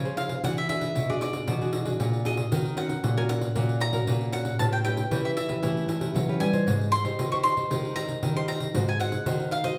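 Up front, a round, double-strung mandolin carries the melody in a picked, high register, its tone warm and full of nostalgic yearning. This short excerpt, cut from a longer samba and choro piece, moves at 116 BPM in a straight 4/4. Two fingerpicked nylon-string guitars with a classical touch sit beneath it: one supplies the chordal accompaniment, while the other holds down the bass line. A jingly pandeiro enters at 0.1 seconds, its small-room sound adding a bright shimmer to the groove. The harmony drifts through rich extended chords, from E9 and Ebm7 to A9, Abmaj7 and Ab7. The band plays live together in one room, bathed in a generous large-studio reverb that lends the performance an intimate yet spacious glow.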